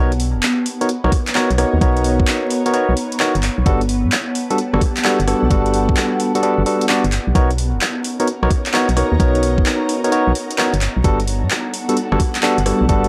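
Sunny and soulful, this two-step UK garage excerpt swings at 130 BPM in B major, moving between Bmaj9 and Gmaj9 as a barky, up-front tine electric piano plays stabs through analog delay over a hollow, organ-like FM bass with dark, tube-saturated punch. An ethereal, detuned pad drifts in the background with chorus, phaser and sidechain pumping, while an overdriven analog drum machine supplies handclaps, hi-hat and rim click, and a knocking electronic kick joins at 1.1 seconds. From 7.9 seconds a very quiet, silky string machine adds sustained chords, and the whole dry, gritty recording carries vinyl crackle and light digital ambience.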